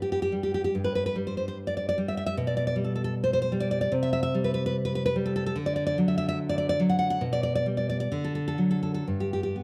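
Intimate and wistful, this short romantic passage for solo nylon-string classical guitar drifts in a rubato 2/4 at around 60-77 BPM, tuned to A4 = 438 Hz, its bright, full-bodied fingerpicked tone sitting up front in a moderate recital-hall reverb within a dark production as it moves from an opening before any chord sounds through G/B at 2.3 seconds, Cmaj7 and D to settle on G at 9.1 seconds.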